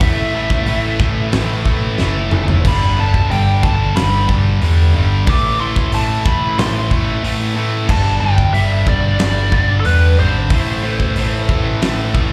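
Hard rock at 91 BPM in A minor, driving and heavy, captured as a live club gig through the venue's PA with small-room ambience and club reverb, cut from a longer piece. A biting, overdriven lead guitar with slapback echo carries the melody over two bright rhythm guitars, one crunchy with spring reverb and one high-gain and distorted, both riffing across A5 and G5 power chords before settling on A minor at 10.5 seconds. A growly, amped picked bass sits underneath, while a huge arena drum kit with a fat snare and punchy kick drives the groove and plays a fill at 2.0 seconds.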